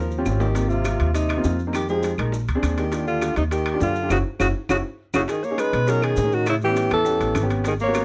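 Lively and sunny, this Afro-Cuban jazz passage moves at a brisk 203 BPM in straight 4/4, in Eb major and tuned slightly low to A4 = 438 Hz. A clear alto saxophone carries the melody up front with light vibrato, a soft attack and scooped notes, while a breathy, whispered tenor saxophone traces a mellow, intimate second line beneath it. The pizzicato upright bass sits forward with a growly steel-string tone, and a baby grand piano adds warm, natural accompaniment from 0.2 s. Around them, round, low-tuned bongos played with soft hands, grainy maracas, woody claves and ringing metal-shell timbales fill in the percussion, the claves and timbales sitting in the background. A drum fill opens the passage, a band accent lands at 4.1 s, and a second fill leads into a new section at 5.3 s, as the harmony moves from Eb13 through Ebmaj9 to Gb5, B6 and A9. Light reverb frames a dry, close recording with a 1970s studio character.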